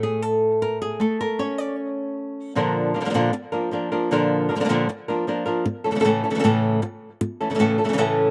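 Dry and open-air in sound, this short, passionate and dramatic flamenco fragment at 155 BPM features a single fingerpicked nylon-string flamenco guitar, woody and warm with the character of old strings, sitting up front across a range from A2 to D5 as it settles onto A at 1.0 seconds, shifts to Bb at 2.6 seconds and returns to A at 5.7 seconds.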